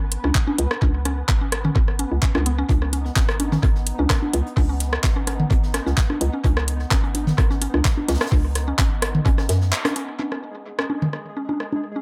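Cool and clinical, this minimal techno excerpt is built on a hollow, bouncy FM bass and an up-front knocking electronic kick, with a garage kit's metallic hats and handclaps, a booming analog drum machine's congas, rim clicks and toms, a woody, nasal mallet-like synth pluck riff, a detuned, pulsing gated texture, and a background jazz brush kit entering at 2.7 seconds, all in an echo-heavy mix that breaks at 9.7 seconds.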